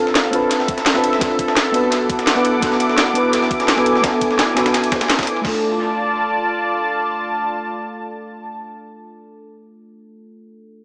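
Liquid drum and bass at 170 BPM in D dorian, this short cut from a longer piece feels lush and rolling, drenched in a wet spring reverb and heavy echo with a small-speaker character. Up front, a mellow FM electric piano plays soft, round, dark chords with a noisy edge, chorus and tape echo, a filter sweep running across it until 5.4 seconds, and it carries on to 10.8 seconds. Alongside it, a thick, warbling unison pad of detuned sawtooths holds vintage-sounding chords with slow attack and long release, pumping against the sidechain and moving from G9sus4 to E9sus4 before resolving to Dm. The drums are layered: a drum and bass kit brings a cracking snare, metallic hi-hats and crash, a gritty, pitched-up breakbeat-style kit with a medium-tuned snare and ride sits tape-softened in the background, and an overdriven electronic kick knocks underneath from 0.7 seconds. All the drums drop out by 5.5 seconds, leaving the keys and pad to float through the second section.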